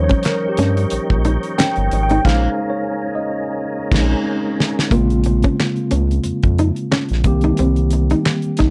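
Sultry and introspective, this short cut from a longer neo-soul R&B piece moves at 90 BPM in 4/4 with a light 16th-note swing, set in Bb dorian. A mellow tine electric piano carries the accompaniment throughout and takes a solo over the opening stretch, while a smooth tonewheel organ holds sustained chords through a chorus vibrato and slow rotary speaker until it stops at 4.9 seconds. Underneath, a round analog bass with a deep, evolving tone built from sawtooth, sine and ring modulation sits up front, and a fingerpicked acoustic flamenco guitar adds a second line from 0.1 seconds. A damped 70s drum kit, dry and mid-forward with a fat snare and tight kick, plays with crash cymbal, hi-hat and handclaps, joining the band in an accent from 2.2 seconds and closing the first section with a fill. The harmony passes through Eb7, Bbm11, Bbm9 and Cm7, wrapped in light reverb and a dark, warm production.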